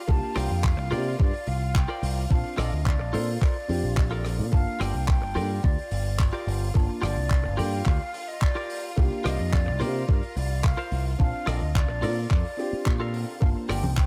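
Nu-disco with a groovy, sleek feel, built on a thumpy, up-front electronic kick, a dry 70s drum kit with handclaps, hi-hat and rim click, and a punchy picked electric bass whose envelope filter gives it a bright, direct bite. A twangy, clean electric guitar riff with subtle chorus sits alongside an airy flute melody with soft attack and expressive vibrato, while a dark, boxy grand piano accompanies and a lush, bowed string section holds sustained chords in the background with sidechain pumping. Tape echo colours the guitar, flute, piano and drum kit in an echo-heavy mix, and a brief touch of ringing congas arrives at 13.8 seconds as this cut-down piece closes.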